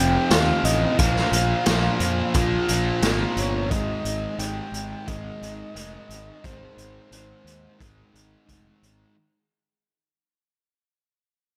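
A straight 4/4 pulse at 88 BPM comes from a raw garage drum kit entering at 0.3 s, its boomy kick, medium-tuned snare and hi-hat sounding gritty and up front in a small room, alongside a bright, double-tracked fuzz guitar riff over F5, Bb5 and Ab5 chords, a growly overdriven fingered bass, and a soft, breathy flute-like synth lead with vibrato, chorus and analog delay, all set in light reverb as this hazy, blissful shoegaze and dream pop excerpt in Ab major fades out across its 9.2 seconds.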